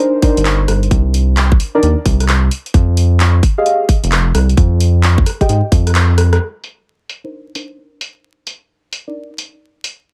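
A rubbery, hollow square-wave bass sits up front in this moody, late-night two-step UK garage cut, its bouncy, fast-attack plucks sidechain-pumping from 0.4 seconds. Deep, mellow chord stabs carry the harmony in C minor, moving from Cm9 to Fm9 and back, their soft, warbling, vintage tone thickened by chorus and trailed by delay. A tight, layered electronic kick drives the 131 BPM groove with a 65% swing on the 16ths, while a punchy analog drum machine adds handclaps, hi-hat and rim clicks that sound re-recorded in a small room, with the hats, snare and room filtered. After a band accent and a drum fill, the kick and bass drop out by 6.4 seconds, and the drum machine carries on under a filter sweep beside the chord stabs. Vinyl crackle colours the dry mix throughout this short excerpt cut from a longer piece.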